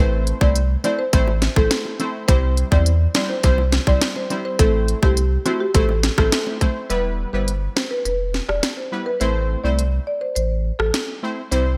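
Dancehall with a hypnotic, bouncy mood, heard here as a short cut from a longer piece and carried by a bright 1980s-style digital production with light reverb and digital ambience. A woody marimba played with medium mallets carries the melody with a dark, smooth tone, while punchy, detuned sawtooth synth brass stabs with chorus fill in the harmony around Am, C and Em. Underneath, a deep, round sine sub bass sits up front, its fast attack and sustained tone anchoring the low end. The electronic island pop drum kit enters at 0.3 seconds with a tight kick, sharp snare, smooth hats and rim clicks, its gated reverb adding a produced, tape-tinged punch. Low-tuned acoustic bongos, played with soft hands and very quiet in the mix, add a close texture until 6.7 seconds, just before the break that begins at 6.9 seconds.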